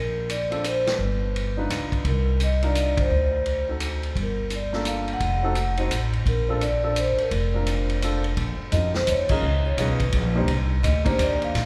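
Ringing, smooth vibraphone played with medium mallets and the motor off carries the melody in this swinging small-group jazz waltz, over a woody, thumpy pizzicato upright bass with gut strings sitting up front. A vintage drum kit with dusky cymbals, a punchy kick and a rolled-off top joins with a polished grand piano in accompaniment, and the band hits accents at 0.8, 2.9 and 9.3 seconds as rich extended chords shift into a second section. A long, wet church reverb gives the warm performance a spacious glow in this brief excerpt from a longer piece.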